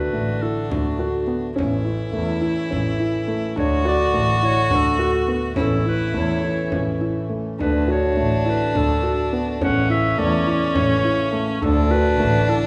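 A felt-muted upright piano, soft and dark with thick felt, spins intimate arpeggios through this hypnotic, restless chamber excerpt in 7/8 at 209 BPM in eighths, as a mellow clarinet carries the melody over a biting, nasal bowed viola line, a clear, earthy bowed double bass up front, reedy, breathing harmonium chords in the background and a deep, very quiet frame drum, all alternating between D and A chords in a church-like hall with a 1.6-second reverb.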